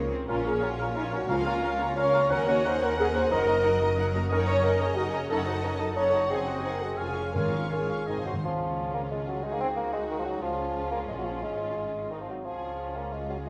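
A fast, dramatic romantic orchestral excerpt in 3/4 at 179 BPM opens with nearly the full orchestra: mellow French horns hold sustained chords up front, a very quiet trombone section adds warm support, and lush bowed violins, viola, cello and double bass carry the melody, inner lines and bass. An airy flute and an oboe trace second lines, a distant bassoon joins at 0.3 s with accompaniment, and crisp hard-mallet timpani strike at 1.3 s and return with a fill that ends at 8.4 s. The lively, spirited music moves with rubato from Bb minor into Db major at 4.3 s, all bathed in a roomy scoring-stage reverb.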